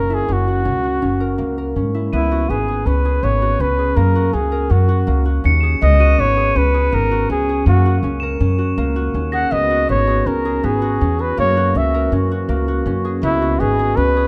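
A flugelhorn leads up front from the start with a soft attack, vibrato and scooped, jazz-style phrasing, over ringing, fingerpicked concert harp arpeggios and a woody, dark pizzicato upright bass, in a shimmering, hopeful piece of contemporary chamber music in 5/4. At 2.1 seconds, soft, bell-like crotales struck with hard rubber mallets add a high, mellow glimmer as the harmony alternates between C#m11 and F#7. At 9.5 seconds, a distant, roomy woodwind section enters in the background with sustained classical-style chords, all captured with close, detailed microphones and light reverb in this excerpt from a longer work.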